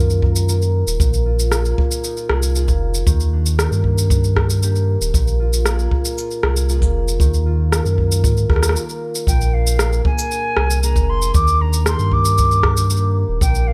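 A small room's ambience surrounds this pastoral, hopeful folktronica excerpt at 116 BPM in a straight 4/4, cut from a longer piece. Mellow, ringing concert harp arpeggios carry a gritty 12-bit sampler texture, low-pass filtering and delay, and a deep, round sine sub bass sits up front beneath a boomy acoustic kick and a tape-warm electronic shaker and rim click, all moving through Ebmadd9, Bb5 and Ebmaj7. After a brief break at 8.8 seconds, a pure, distant silver concert flute enters at 9.3 seconds with a crisp attack, expressive straight tone and delay, as the harmony shifts to Bb7.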